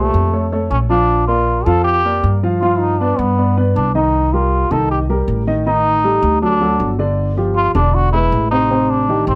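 Afro-Cuban jazz in G minor at 158 BPM, this short excerpt carries a sophisticated, sultry mood, with a trombone in a metal mute playing the melody up front in a buzzy, breathy voice with a smooth top. A dark, mellow baby grand piano supplies the accompaniment while a woody, growly pizzicato upright bass holds down the low end, all three sounding for the full 9.4 seconds under light reverb. The harmony moves restlessly through colourful changes such as Faug, Ebmaj7#11/A and Am7b5.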